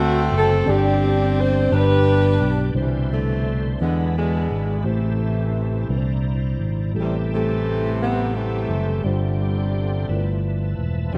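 Rolling in a straight 6/8 at 57 BPM, this uplifting, jubilant slow gospel fragment puts a warm, jazz-style saxophone section with vibrato up front on the melody, joined by a punchy, amped fingered electric bass, a mellow, clean tine electric piano in the background, and a reedy, bright tonewheel organ with key click, chorus vibrato and a fast rotary speaker holding sustained chords, set in light reverb within a rough home demo mix as the harmony moves from D7 and G through Cmaj9, E7 and Am13 to a closing G13.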